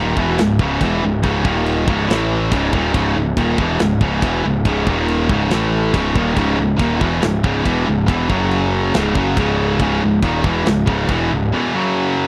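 Driving straight 4/4 at 140 BPM in C# minor, this epic, relentless heavy metal excerpt pairs two bright, high-gain distorted guitars playing a riff over C#m, D#5, C#5, A5 and F#5 with a growly, fuzz-drenched picked bass and a tight, mid-forward acoustic kit of kick, medium-tuned snare and china cymbal that enters at 0.2 s, all captured in a dry, close 1970s-style studio sound.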